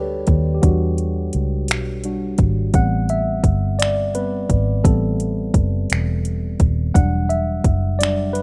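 Yearning and sultry, this slow six-eight R&B excerpt at 57 BPM features a worn, slightly out-of-tune tine electric piano with subtle chorus taking a solo over Em9 and Am9 chords, backed by a dark, round, foam-muted fingered electric bass and an overdriven electronic drum kit of finger snaps, metallic hi-hat and a soft kick that enters at 0.3 seconds, all in a rough home-demo mix with digital ambience.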